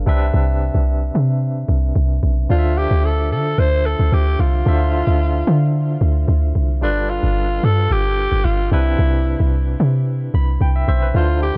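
Amapiano at 111 BPM with a late-night, soulful mood, built on a deep, round log drum bass sitting up front with a dark, percussive punch, under a barky tine electric piano that carries fast tremolo through a combo amp over chords moving from Cmaj7 to Dm9, G9 and back to Cmaj7. A growling, breathy alto saxophone enters at 2.5 seconds as the solo voice, raspy and vintage-toned with vibrato and a trail of delay, while the electric piano adds a short fill at 10.1 seconds. The whole cut sits in a small room and has the worn, warbling pitch drift of old cassette tape.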